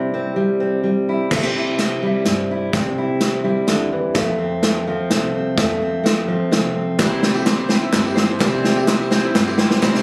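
A dark, fingerpicked steel-string acoustic guitar opens this uplifting, anthemic indie folk passage in 3/4 at 127 BPM, moving from C to F. At 1.3 seconds a punchy, natural country drum kit with crash, hi-hat, kick and snare enters up front, along with a woody, thumpy upright bass in the background, as a long build-up and drum fill carry the music forward. At 7.0 seconds, as the chords return to C, a bright, shimmering twelve-string acoustic guitar joins along with warm piano arpeggios, hollow group handclaps and a very quiet, jingly tambourine; the fingerpicked guitar drops out at 8.4 seconds, and the whole cut-off passage has the roomy, lightly reverberant sound of a phone recording in a club.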